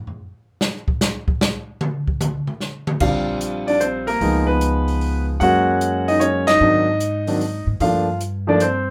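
Drums open this jazz piano trio excerpt with a solo, entering at 0.1 seconds with an airy, polished small-room sound: shadowy cymbals, a medium-tuned snare and a boomy kick, placed up front. At 3.0 seconds the concert grand piano and upright bass arrive together, the piano carrying the melody between Eb3 and Gb5 with a deep, open low end and long sustain, also up front. The pizzicato bass sits lower in the mix, woody and dusky with steel strings, moving through Bb1 to Ab2. The tune swings in 3/4 at 150 BPM over a sophisticated, relaxed harmony that moves from Bb69 through Db7, Gbadd9 and Ab7#11 to Gm7, with the band hitting an accent together at 6.4 seconds. A moderate club reverb gives the trio an intimate sense of space.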